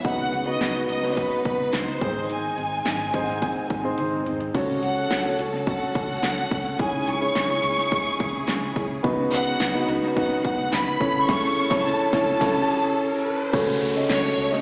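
A driving, straight 4/4 pulse at 107 BPM from a punchy, overdriven pop drum kit anchors this earnest piano-driven pop excerpt, where an up-front concert grand with deep bass and a rich, focused violin section carry accompaniment and melody with slapback echo over lush, distant strings, a round foam-muted electric bass and a very quiet fingerpicked jumbo acoustic guitar, with a piano fill at 2.9 seconds, a band accent at 11.3 seconds and a background riser and downlifter entering at 11.2 seconds, all heard as a live gig through the venue's PA in moderate club reverb.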